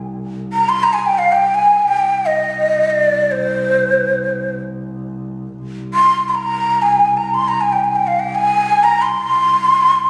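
A dark, woody bowed double bass sustains a low drone from 0.0 s, and at 0.5 s a breathy, reedy ney enters up front with a soulful, longing melody full of vibrato, soft attacks and an unsteady tone, both heard through a wet recital-hall reverb in this phone-recorded, compressed fragment of a longer Turkish makam ensemble piece.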